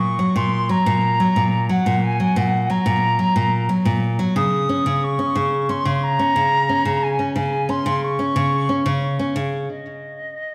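Folktronica fragment at 90 BPM in 4/4 with a delicate, pastoral mood, where an up-front nylon-string guitar with bright, fresh strings fingerpicks classical arpeggios over a rootless E-flat minor chord that gives way to a chordless passage at 4.4 s, ending at 9.7 s, while a distant silver concert flute carries the melody with a pure tone, crisp attack, expressive vibrato and tape echo until 10.5 s, all within the glow of a wet recital hall.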